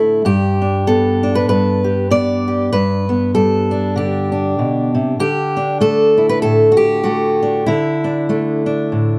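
Folk fingerstyle piece for solo steel-string acoustic guitar in G major at 97 BPM with a light swing, gentle and nostalgic, where the bright, fresh-stringed guitar sits up front in a dark production with light reverb, moving from G to Dsus2 at 5.2 seconds within a brief 9.2-second passage cut from a longer piece.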